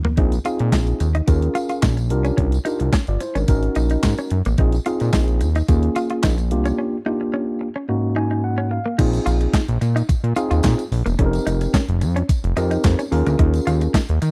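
Danceable and funky, this early-eighties boogie funk excerpt rides on a fat, detuned sawtooth analog bass with a plucky filter and a crisp, overdriven 8-bit drum machine with a thumpy kick and handclaps, both up front in a dry, close studio sound. A mellow tine electric piano plays accompaniment through its built-in speakers, a direct-recorded clean electric guitar picks a compressed riff bathed in lush chorus, and a jingly tambourine sits in the background over ninth sus4 chords. After an opening drum fill, a break arrives at 6.8 seconds with an electric piano fill from 7.9 seconds, leading into a new section at 9.0 seconds.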